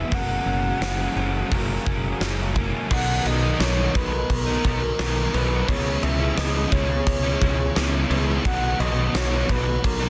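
A breathy, flute-like synth lead carries the melody over a shimmering, octave-doubled twelve-string acoustic guitar, a crunchy overdriven guitar riff and a darker, slightly broken-up electric guitar sitting in the background with reverse reverb, all opening this blissful, wistful excerpt of shoegaze-tinged dream pop rock in B major at 86 BPM. A huge arena drum kit with a fat snare, punchy kick and bright cymbals joins at 0.1 seconds over a growly, up-front picked bass, while the very quiet twelve-string drops out at 2.9 seconds as the harmony moves through Bmaj7 and C#m7. The acoustic returns at 8.5 seconds, and the soft, sustained synth, with chorus, vibrato and analog delay, floats over a dense, heavily limited modern mix in a small room.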